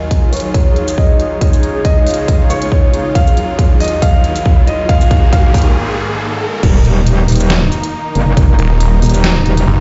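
Heavy wobble dubstep in a half-time feel, aggressive and weighty, opening with an intimate grand piano melody with audible action noise, filtered and delayed, over lush supersaw chords, a breathy warbling pad with chorus, a background riser and noise sweep, and a punchy, up-front kick with a deep-snared, crisp-hatted drum kit that plays a fill before a brief break. At 6.6 seconds the drop lands on a metallic, chorused FM wobble bass, joined at 8.6 seconds by a snarling, growling saw bass with distortion and a moving notch, while the supersaw chords and the pad pump against the sidechain. The sound sits in a large studio reverb, as if played on a big sound system in a bare room, with the top end dulled above 7.8 kHz, in a brief cut from a longer piece.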